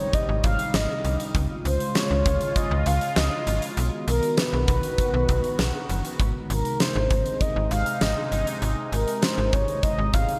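Synth-pop with a nostalgic, upbeat mood, this short excerpt moves at 99 BPM in a straight 4/4 feel in Ab major, its harmony passing from Ab through Db and B before settling back on Ab at 6.2 seconds. A mellow, horn-like synth lead carries the melody from the start, its round, warbling vintage tone softened by chorus, delay and a shimmering reverb. Beneath it, a sweeping resonant pad holds sustained chords, its detuned sawtooth voice evolving with a slow attack and a bright, filtered glow. A huge arena drum kit arrives at 0.1 seconds with a punchy kick, fat snare and hi-hat sitting up front in a big room, and at 0.3 seconds a slap-like FM bass joins with a snappy, metallic attack that then decays. The bright 1980s-style digital production is bathed in a lush hall reverb, with a faint mains hum beneath it all.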